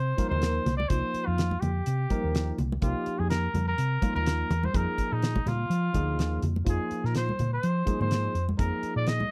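Swung sixteenths at 125 BPM in 4/4 drive this slick, driving electric jazz fusion excerpt in C minor, cut from a longer piece and captured close in a small 1970s-style studio room: an acoustic drum kit with a fat snare and tight kick sits up front beside a vintage solo trumpet with light vibrato, scooped notes and slapback echo, while a dark, round hollow-body electric bass holds the low end, a barky, gritty overdriven tine electric piano with analog chorus accompanies, and ringing, medium-tuned congas stay in the background as the harmony moves from Cm7 to Fm11 at 4.7 seconds.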